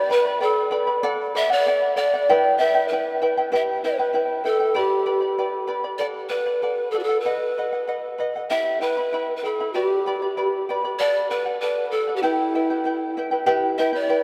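Drenched in a vast, echoing cathedral reverb, this wistful, melancholic Andean folk fragment moves at 96 BPM in a straight 2/4 in E minor, tuned slightly low to A4 = 435 Hz. Up front, a mellow wooden pan flute carries the melody with an airy chiff, crisp attack, rolled-off highs and an unsteady vibrato. Beside it, a fingerpicked acoustic charango gives shimmering accompaniment on double strings, some octave-doubled, over a cycle of G, D and E minor chords that briefly passes through B.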